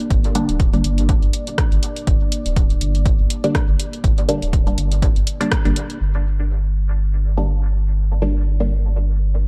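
A round, deep analog bass sits up front in this hazy, cavernous slice of dub techno, its nasal, sine-like tone pumping against a punchy, tape-warm electronic kick. A punchy analog drum machine adds low-pass filtered hi-hat and rim click, with both drum parts carrying the grain of a small room and a swung sixteenth-note feel. Muted, detuned sawtooth chord stabs pluck through chorus, phaser and a trailing dub echo, while a filter sweep runs across them through the opening section. Beneath it all, a moody, slow-blooming pad with a sub octave holds sustained chords, phased and chorused, breathing with the sidechain pumping it shares with the bass and stabs. After a band accent at 5.5 seconds, the drums drop away by 6.0 seconds, leaving bass, pad and echoing stabs in a dark, dry space for the rest of this cut from a longer piece.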